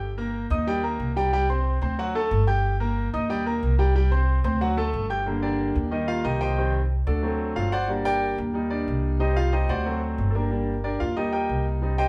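Salsa at a fiery, danceable 183 BPM in G harmonic minor, this short cut from a longer piece sets a bright, brilliant concert grand piano over a woody, thumpy pizzicato upright bass with dark gut strings, both up front through a Gm–Eb–C–D cycle that turns toward Cm and D7 when the polished piano takes a solo from 5.3 seconds, with the band playing live in one room under moderate large-studio reverb.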